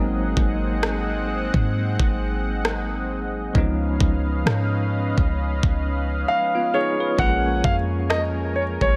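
Light reverb and a digital ambience frame this short cut from a longer contemporary R&B piece, which feels sensual and longing at a slow 66 BPM in 4/4 with a gentle swing on the sixteenths. A bell-like tine electric piano carries the accompaniment over a lush, detuned sawtooth pad, whose chorus and sidechain pumping give its sustained chords a breathing thickness. Beneath them sits a clean, boomy 808-style bass, deep and dark. The smooth drum kit, electronic and re-recorded in a small room, comes in at 0.4 seconds with a knocking kick and rim click over a G#7 chord, and the harmony moves to C#9 at 3.5 seconds. At 6.3 seconds the drums drop out and a concert grand piano enters up front with the melody, intimate and polished, with audible action noise and a digital delay on its long sustain. The drums return at 7.2 seconds as the chords shift to A#m7 and a new section begins.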